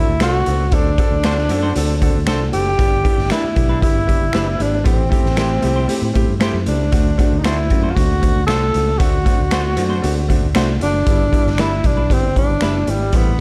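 A breathy, whispered tenor saxophone with vibrato, scooped notes and slapback echo carries the melody up front in this uplifting, joyful, uptempo 1960s-style soul excerpt, supported by a growly fingered electric bass and a clear grand piano with audible action noise and long sustain. From 0.2 seconds, a gritty, saturated garage drum kit with a punchy kick pumps in a bright stone room, a scooped hollow-body electric guitar adds clean stabs in the background, and a very quiet, dry finger snap adds percussion, all within light reverb and a dark production as the chords move from D7 through G6 and Am7.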